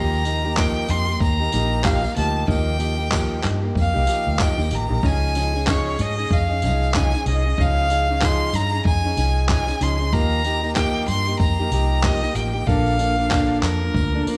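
A loose, swung sixteenth-note groove in four drives this easy-going, carefree stretch of acoustic pop, cut from a longer piece. A very quiet, jingly, band-limited vintage tambourine enters at 0.1 seconds, joined at 0.2 seconds by a dusty, sampler-style soul drum kit that brings a thumpy kick, handclaps and tambourine with a compressed, gritty, tape-warm character. Underneath, a foam-muted fingered electric bass sits dark and round, with a punchy amped tone and a touch more level than the other parts. A fingerpicked, plugged-in jumbo steel-string guitar sits up front with a full-bodied sound, outlining a relaxed progression from Ebadd9 to Dbadd9 and back, settling on Bbmaj7 near the close. Above it all, a single bowed violin carries the melody, smooth and even with gentle vibrato, heard close in a small room with light reverb.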